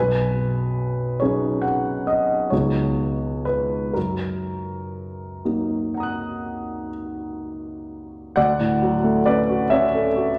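A warm, intimate concert grand piano, up front with audible action noise and deep bass, plays a serene, dreamy impressionist solo in F# major, its rubato 9/8 drifting at 39-48 BPM through B6/9, C#9sus4 and F#6 chords before turning to Dmaj7 at 8.4 seconds, all set in a wet recital hall reverb.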